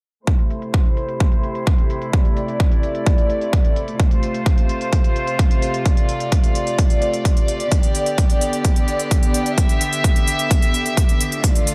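Emotional and powerful, this cut from a longer festival progressive house track moves at 129 BPM in a straight 4/4, set in A minor. A chamber string section plays sustained, bowed chords with a soft attack and a pure, floating quality. The strings sit up front yet feel distant, with sidechain pumping and a low-pass filter sweep shaping them from 0.3 to 11.7 seconds. The harmony moves from Am to F to G. Underneath, a punchy, layered electronic kick drives the groove until 11.5 seconds, while crisp, low-passed electronic hi-hats sit further back. Both drums carry a tape-like warmth and large-room character, and a light reverb with digital ambience gives the mix a sense of space.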